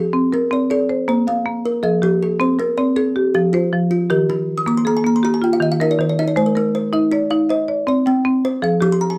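This short excerpt of southern African traditional music opens with kalimba and marimba sounding together from the first moment, both spinning arpeggios in a hypnotic 12/8 at 106 BPM in dotted quarters, tuned to an equiheptatonic F scale. The marimba, struck with medium hard mallets on padauk bars, sits slightly forward in level with a dark, smooth, percussive tone. The kalimba rings out with a bright, airy thumbnail pluck and a hollow-box body, reaching higher into its range than the marimba. It breaks into fills from 4.4 to 6.4 seconds and again from 8.6 seconds to the close. Underneath, the harmony circles through Fm, Bb, Eb, Ab and Cm before returning to Fm, giving the cyclical pattern a gently warm pull. The sound is dry and close, like a 1970s studio session touched with light reverb, with both instruments up front.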